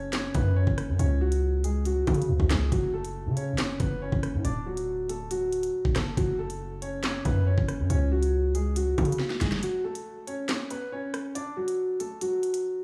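A half-time drill groove in 4/4 drives this dark, tense hip hop excerpt, with an electronic kit of knocking kick, sharp snare, crisp hi-hats, rim clicks and handclaps sitting up front and playing a drum fill at 9.2 seconds. A distorted, aggressive 808-style bass with a noise layer and fast attack carries the low end until 9.6 seconds, when a break begins. Over this, a mellow, vintage baby grand piano plays the melody with long sustain and digital delay, circling minor, suspended and major chords in a small, lightly reverberant room.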